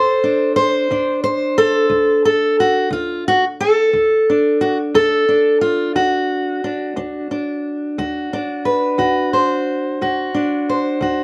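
Heard through worn, warbling cassette tape with a warbly pitch drift and moderate studio reverb, this swaggering, gritty acoustic country blues fragment sets a lone bright, fingerpicked steel-string acoustic guitar up front, playing in a straight 12/8 at 59 BPM in D mixolydian over a D7 chord for its 11.2 seconds.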